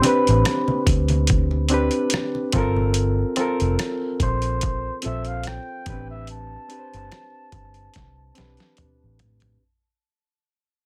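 A smooth, late-night neo-soul groove in A minor at 72 BPM opens with a gritty, overdriven boom bap kit with a thumpy kick, a barky, reedy electric piano, and a veiled bucket-muted trumpet singing the melody with light vibrato, while thin, damped congas sit in the background until 2.9 seconds. A dark, round, foam-muted fingered bass joins at 0.3 seconds, with the drums, bass and electric piano all up front over chords moving from Am11 to Gm11 and back. The whole passage fades out under light reverb and a dense, heavily limited master, and the drums close it with a fill from 7.9 seconds.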